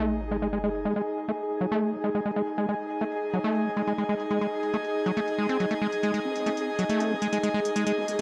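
A straight four-count groove drives this intense, alien psychedelic trance fragment, with crisp, tape-warm electronic hi-hats under a filter sweep and a squelchy, distorted acid bass riff up front, its resonant sawtooth tone swept by a filter and echoed on tape. An electronic sub drop marks the opening impact, while a mellow, pulsing gated texture holds sustained chords with 12-bit sampler grit, and a bright, breathy pad floats airily up front. At 6.2 seconds a nasal, wobbling vowel-sweep bass joins in the background, saturated and chorused, all set in a moderate plate reverb.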